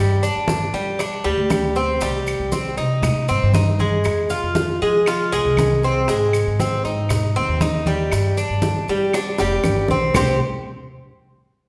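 Heard in the wet reverb of a recital hall, this sultry, nostalgic excerpt of Cuban son and guajira moves at 118 BPM in C minor. An up-front Cuban tres, bright and metallic, picks arpeggios on its doubled strings over a pizzicato upright bass with a woody, steel-string tone, while thick-skinned, damped congas, round low-tuned bongos, claves (joining at 1.0 s) and grainy, mellow maracas sit in the background. The chords run from G5 through Cm, Fm and Ab back to G5, and a drum fill from 9.1 s leads into a brief new section at 10.2 s.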